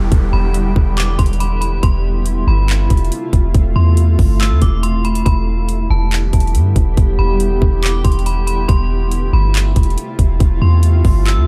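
Atmospheric cloud-rap hip hop at 140 BPM in a half-time feel, melancholic and spacious, this short cut alternates between Em7 and Fmaj7/E over a shimmering, ethereal pad with granular texture, chorus and its own built-in reverb, all set in a light reverb. A deep, boomy, clean 808 bass sits up front beside an electronic trap kit of hard-clipped kick, metallic hi-hats and handclaps with a tape-warm edge, while a faint downlifter lingers in the background until 1.8 seconds. From 0.3 seconds a bright, inharmonic FM bell carries the melody high above, ringing through chorus, tremolo, a low-pass filter and analog delay.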